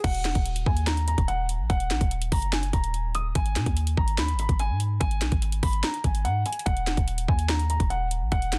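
A half-time trap beat drives this brief, brooding hip hop excerpt, with a hard-clipped kick, sharp snare, metallic hi-hats and crash cymbal sitting up front beside a deep, boomy 808-style bass built from a sine tone and a noise layer, its fast attack decaying away. Above them a dark baby grand piano carries a melancholic high melody, its short sustain and audible action noise softened by a low-pass filter and trailed by tape echo. The dry, dense, heavily limited mix keeps the whole 8.6-second passage close and heavy.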